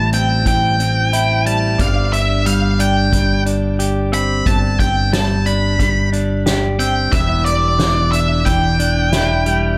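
In a straight 4/4 pulse, this melancholic, cathartic post-rock fragment, cut from a longer piece, moves from Am7 to Gsus4 and settles on Em7 at 7.1 seconds. An up-front, dark octave-fuzz lead guitar carries the picked, distorted melody through tape echo. Beneath it, a clean electric guitar plays fingered arpeggios soaked in spring reverb and tape echo, and a bright, punchy fingered bass plays directly. A soft-mallet drum kit with a medium-tuned snare and punchy kick sits distant and roomy from 0.1 seconds. In the background, a compressed pedal steel guitar adds sustained slide chords with volume swells, and the whole mix sits in light reverb and small-room ambience.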